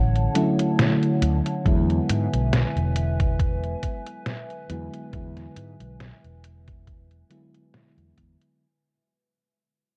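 Nostalgic and woozy, this short vaporwave fragment drifts at 69 BPM with a gentle 16th-note swing, moving from Dmaj7 to E7 under a worn, warbling cassette-tape haze with pitch drift. A soft, round FM electric piano with a faint chorus shimmer carries the accompaniment over a slow-blooming lo-fi pad of sustained chords, gritty with vintage 12-bit sampler texture and built-in reverb, while a dark, amped fretless electric bass moves through a filter sweep. A detuned 8-bit drum machine supplies up-front hi-hat and a medium-tuned snare in a small room, joined at 1.7 s by a thumpy electronic kick, as the whole clip fades out across its 8.6 seconds.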